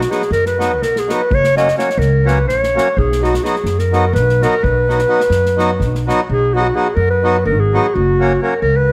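Virtuosic and wild, this short cut from a longer Balkan wedding-band folk piece drives along at 253 BPM in 7/8 in B major, with a mellow, soft-attacked classical-style clarinet solo up front over a woody pizzicato upright bass, reedy, airy accordion accompaniment in dry tuning, and a punchy, polished acoustic drum kit played with bundle sticks that drops out at 6.1 seconds, all set in light reverb.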